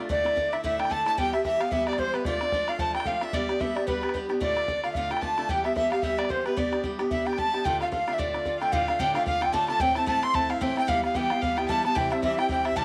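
An airy wooden flute carries the melody of this driving, spirited Celtic reel, its crisp attack and vibrato colored by a tape echo. The tune moves at 222 BPM in 4/4 with a swung eighth-note feel, sitting in D Dorian over chords such as Dsus2, Em, G and Dm. A single bowed fiddle plays a second line in the same register, its clear, intense tone touched with light vibrato and a smooth top end. A bright, picked acoustic archtop guitar sits up front in the accompaniment, and an open, boomy bodhran adds compressed, saturated percussion underneath. Light reverb and small-room ambience surround the ensemble, and the piece shifts to a new strain at 8.7 s, bringing in Am and C before this section, cut from a longer performance, ends at 12.8 s.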